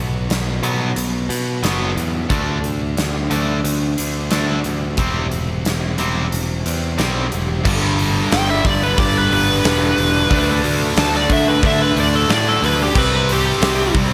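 A heavy, driving hard rock excerpt opens at a steady 90 BPM in 4/4 with an overdriven guitar riff and a growly, punchy picked electric bass sitting up front. The huge arena drum kit crashes in at 0.3 seconds with a punchy kick, medium-tuned snare, hi-hat and bright cymbals in a pumping room sound, and two more overdriven guitars join on the riff moments later, one of them carrying a slapback echo. The rhythm guitars stay in the background, including a very quiet, double-tracked warm layer beneath the bright, picked, overdriven parts. The chords move from B5 through D5 and C/E, then shift to G, D5 and C5 as the second half begins. At 8.3 seconds a biting lead guitar solo steps to the front, its overdriven tone set off by slapback echo, while a lush hall reverb gives the whole mix a big arena feel.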